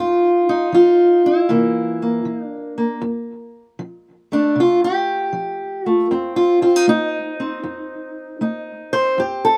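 A fingerpicked steel-string parlour guitar carries this short acoustic country blues fragment on its own, its tone dark and boxy and placed up front. The mood is soulful and rollicking, moving at 78 BPM in 4/4 with a swing on the eighth notes, set in F mixolydian. The guitar ranges from F2 up to C5, working through F7 and C7 before returning to F7, and from 3.0 seconds it steps into a solo passage that runs to the close at 9.6 seconds. The sound is dry and open-air, captured outdoors with little reverb and hardly any sense of a room around the strings. Cut from a longer piece, the fragment offers a brief glimpse of an outdoor performance.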